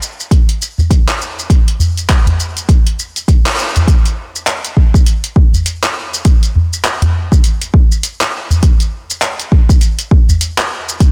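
Hypnotic and mystical, this downtempo fragment at 101 BPM swings its 16ths over a tape-warmed, up-front deep house kit of handclaps, hi-hat and shaker with a softly clipped snare, joined at 0.3 s by a layered electronic kick re-recorded in a small room and at 0.8 s by a deep, close acoustic udu, set in light reverb under a dense, heavily limited master, with a band accent at 3.4 s.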